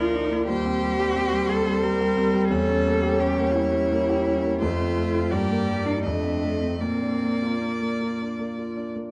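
A clear concert grand piano sits up front with a deep bass and natural tone, carrying the accompaniment from D2 to G4 across the full 9.1 seconds of this short excerpt from a slow romantic movement for piano quartet. Above it, a single violin sings the lyrical melody between Bb4 and Eb5 with a smooth, even bowed line and vibrato, while a lone cello adds an expressive second line from Bb3 to Bb4, its soft attack and portamento giving the phrase a tender glow. A focused, somewhat distant viola fills in the accompaniment between F3 and Bb3 with its own vibrato. The music moves in a rubato 3/4 at around 75-90 BPM in Bb major, tuned to A4 = 436 Hz, passing through Cm/Eb, Edim7, F, Gm and F7 before settling on Bb at 6.8 seconds. Close, detailed microphones capture the players inside a moderate recital hall reverb of 1.6 seconds, lending the warm, lyrical mood an intimate yet spacious feel.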